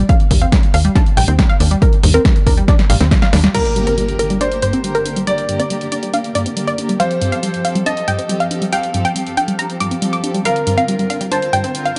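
A detuned sawtooth unison pluck carries a bright, lush melody through this euphoric yet bittersweet uplifting trance fragment, joined by a tight, chorused sequenced arpeggio under a filter sweep, a ring-modulated sequencer bass that stops at 3.5 s and an up-front layered kick that drops out at 3.2 s. At 3.5 s an electronic impact, a brilliant baby grand piano with audible action noise and a distant bowed string section with vibrato arrive beside a tape-toned analog drum machine, all in a dark production with light reverb.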